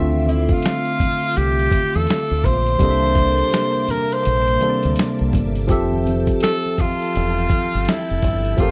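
Soulful and smooth, this short neo-soul and R&B cut sits at 83 BPM in F major with a swung sixteenth-note feel, moving through Dm9, C13 and Fmaj9 over a barky, phased tine electric piano, a dark, round fingered bass and a quiet background shimmer of chorused string-machine violins. Faint low-tuned congas slip in at 0.1 s, and a gritty, compressed sampler-style drum kit with a thumpy kick, snare, hi-hat and finger snaps arrives at 0.3 s. Up front, a warm tenor saxophone carries the melody with subtone, light vibrato and scooped notes, all captured in a dry, close 1970s-style studio sound.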